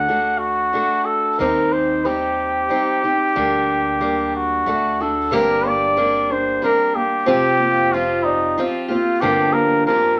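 A clear flugelhorn carries the melody from the very first moment with light vibrato and a vintage, classical tone, joined at once by a picked steel-string acoustic guitar and a plucked upright bass. This intimate, wistful acoustic folk fragment moves in an unhurried 3/4 with a straight feel, its phrase stated twice in two similar passages. The guitar sits up front beside the horn, dark in colour and touched with audible finger squeaks, while the woody pizzicato bass stays low and quiet beneath them. At 5.3 seconds a felt-muted upright piano slips into the background with soft, mellow arpeggios of short sustain. A modest small-room reverb wraps the group in a close, natural space, as the harmony drifts from D through Cm/Eb toward a closing Gm7.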